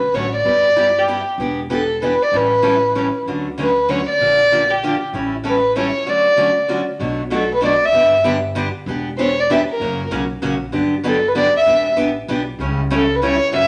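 A dark, bowed violin sits up front with a soft attack, light vibrato and an intimate sul tasto tone, carrying the melody through this charming, playful stretch of jazz manouche at 192 BPM in a swung 3/4. Beneath it, a bright, boxy parlour-style steel-string guitar is picked close to the listener with audible finger squeak, while a woody, thumpy gut-string upright bass is plucked low in the mix. The harmony moves from D major into B minor at 7.0 s, and a generous large-studio reverb surrounds the playing.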